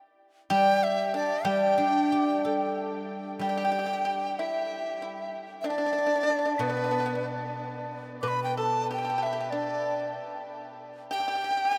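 A breathy large dizi leads this Chinese traditional excerpt, its bamboo tone carrying the buzz of a membrane, a soft attack, vibrato and an unsteady quality as it sits up front with the melody. The mood is graceful and festive, moving at 94 BPM in 2/4 with a rubato feel in G gong mode. Beneath it, a pipa played with fingerpicks adds a second line, its sound dry and percussive, while a guzheng, also up front, supplies silvery, ringing accompaniment until it stops at 10.2 s. The dizi and pipa carry on to the close at 11.8 s, with a new section beginning at 3.1 s. The whole ensemble sits in a vast, echoing space, bathed in a huge, wet ambient reverb that lets each note hang long after it is played, and the passage is cut from a longer piece.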